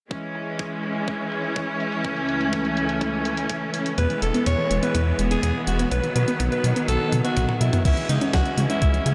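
Bright, biting string chords with vintage sampler grit open this melodramatic, bittersweet italo disco excerpt over a thumpy electronic kick and a filtered 12-bit drum machine of congas, toms, hi-hat, crash and fat snare, whose filter sweep continues through a fill from 7.1 s, while from 4.0 s a raspy alto saxophone with delay carries the melody above a deep, round analog bass and gentle chorused pluck arpeggios in the background, the whole mix soaked in dreamy cathedral reverb.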